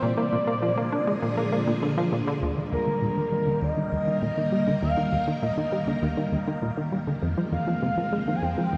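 Drenched in a vast cathedral reverb, this mysterious, hypnotic cut from a longer piece of sequencer-driven space music moves at 100 BPM in 4/4, with a punchy, nasal plucky analog bass riff with tape echo taking on a filter sweep from 2.4 s, a swirling phased string machine holding bright sustained chords through ensemble chorus, a smooth portamento lead singing a mellow melody with vibrato, chorus and tape echo, and a breathy, wind-like tuned noise texture barely audible from 0.9 to 2.4 s, as the harmony moves from Bb7 to Eb to Fmadd9.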